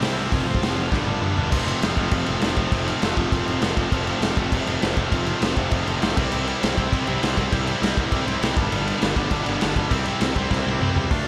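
Punk rock at 200 BPM in a straight 4/4, this upbeat, energetic excerpt from a longer piece drives three distorted electric guitars through riffs over a growly, fuzz-laden picked electric bass, with two overdriven guitars sitting in the background and a third double-tracked, compressed one kept very quiet. Up front, a raw garage drum kit with a punchy kick, medium-tuned snare, hi-hat, crash and toms sounds dark and smooth with a rolled-off top in a bright stone room, and its fills at 0.9 and 10.5 seconds mark the turns. After a short opening, the second section settles in at 1.5 seconds, cycling through F, C and G under light reverb.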